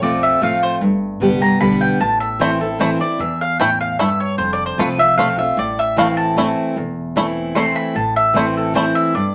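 A lilting three-beat waltz pulse with a straight feel carries this short, haunting bluegrass passage cut from a longer piece in a minor key. Up front, a woody mandolin picked on double strings sings the melody, while a full-bodied, picked steel-string acoustic guitar with the occasional finger squeak supplies the accompaniment. An upright bass, pizzicato on steel strings with a warm tone, sits low in the background. At 2.4 seconds a bright, twangy banjo played with fingerpicks joins the melody with a percussive edge, dropping out at 8.8 seconds. The harmony moves through F, G and A minor, and a wet studio reverb lends the rustic tune a lingering, spacious air.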